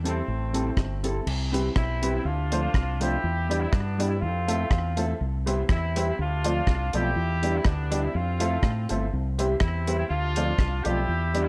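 A driving ska groove at 122 BPM in 4/4 with a light swing on the eighths, this energetic fragment cycles through jazzy seventh chords, Am7, Cmaj7, Dm7, Em7 and Fmaj7, and opens on a short section that gives way to a longer one at 1.3 seconds. A deep reggae drum kit, dry and dark with a tight kick, hi-hat, rim clicks and crash, sits up front beside a round, punchy fingered electric bass, while a mellow clean electric guitar with spring reverb and slapback echo and a worn, woody upright piano, slightly detuned with audible action noise, add echoed stabs and accompaniment. Over them a clear vintage horn section carries the melody with light vibrato, all set in a small room with light reverb.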